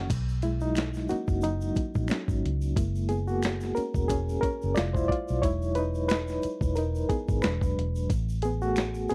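A dry, close 1970s-style studio sound frames this smooth, relaxed neo-soul R&B excerpt at 90 BPM in B major, swinging gently on the sixteenths. A reedy, clean electric piano with tremolo takes the lead as a solo from 0.1 seconds, moving through chords such as Bmaj9, F#9 and Emaj9 before settling on Amaj7sus2. Beneath it sit a dark, round, foam-muted fingered electric bass and a gritty, compressed sampler-style drum kit with a thumpy kick, medium-tuned snare, hi-hat and crash, while a faint tube shaker, finger snaps and group handclaps sound distant, as if from a large room.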